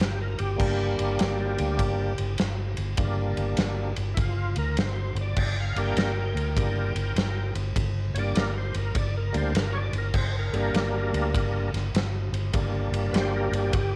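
Blues rock and southern rock in a power-trio vein, this heavy, gritty passage sits on a Gm chord in G minor at 100 BPM in 4/4 with a swung eighth-note feel, as an overdriven tonewheel organ takes the solo with thick, sustained chords through a slow rotary speaker and chorus vibrato, a vintage muted fingered electric bass supplies a round, foam-muted, punchy low end, and a big rock drum kit with a dark, rolled-off top sounds its crash, ride, snare and kick in a big room, the whole mix set in moderate spring reverb.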